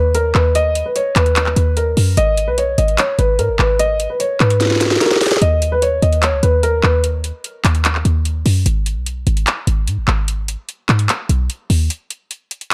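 Menacing and hard-hitting, this half-time trap cut at 148 BPM centers on Abm, with a dark, mellow concert grand piano carrying the melody through tape echo until 7.0 seconds. A punchy, tight 808-style bass with a sine body, a noise layer and tube saturation sits up front alongside an electronic trap kit of sharp snare, metallic hi-hats and handclaps, which plays a fill at 4.6 seconds and carries the break through to 12.7 seconds. The dry, gritty hardware sound is set in a digital ambience.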